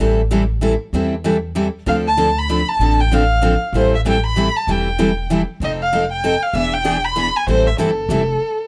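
A brisk swing in triple time drives this short cut from a longer acoustic string swing piece in the gypsy-jazz style, virtuosic and swinging in mood. Two picked steel-string acoustic guitars carry the accompaniment from the start: one bright, full-bodied and up front with fresh strings and audible finger squeak, the other softer and set in the background, also with finger squeak. An upright bass with gut strings plays pizzicato underneath, woody, dark and thumpy, until it stops at 8.4 seconds. A bowed violin enters at 1.9 seconds with the melody, expressive and warm-toned, rich with vibrato and portamento, up front yet with a slightly distant air. The harmony moves from Am7 through Dm7 and F7 to a tense E7#9 before settling back on Am7, captured by close, detailed microphones in a dry room.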